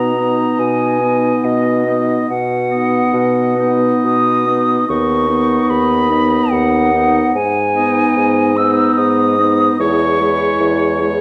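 A hollow, airy concert flute carries the melody up front and close to the ear, its vibrato and crisp attack giving this slow, elegiac passage for wind quintet a singing focus. Set in G# minor at 72 BPM in a rubato 3/4, the music unfolds with a melancholic, romantic ache. Beneath the flute, a clear oboe with light vibrato sings a punchy second line from a distance, while a roomy French horn and a present clarinet, heard in the background, supply the inner accompaniment. A mellow bassoon anchors the bass, sitting forward in the blend. The harmony moves from a rootless G#m/B through B/D# at 4.9 seconds and G#m to C#m/E at 9.8 seconds. The dark production is bathed in the generous reverb of a scoring stage, and this fragment of a longer piece breaks off at 11.2 seconds.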